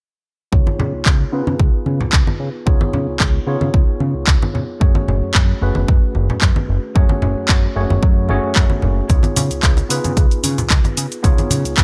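A punchy, overdriven electronic kick sits up front at 112 BPM in 4/4 with a light swing on the sixteenths, starting together with the bass and electric piano. It is joined at 0.7 s by ringing, low-tuned congas played with soft hands and at 1.1 s by a house kit of bright hi-hats, handclaps and cabasa, giving this sunny, feel-good nu-disco excerpt its drive. A fat, detuned analog bass with a moving notch anchors the Db mixolydian groove, while a worn, slightly out-of-tune tine electric piano, heard as if through built-in speakers, carries the chords from Db9 to Gbmadd9 and back, pumping with sidechain compression under a filter sweep and dub echo. The mix is dry in terms of reverb yet heavy with echo.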